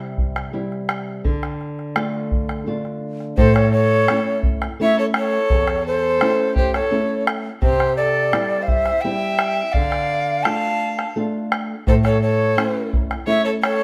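A breathy, hollow cane quena carries the melody, entering at 3.4 seconds close-miked and up front, its tongued notes shaded with vibrato. This melancholic, earthy piece of Andean folk moves at 85 BPM in a straight 3/4, cut from a longer performance. A small, thumb-plucked nylon-string guitar opens alone at 0.0 seconds with dark accompaniment, and a deep bombo joins almost at once, sounding close and dry. When the quena arrives, a single bowed violin enters beneath it with a second line, its rich, reedy gut-string tone and light vibrato recalling a period style. The harmony circles through C, D minor and A, and the ensemble plays live together in a stone room whose wet reverb lends the performance an open, echoing space.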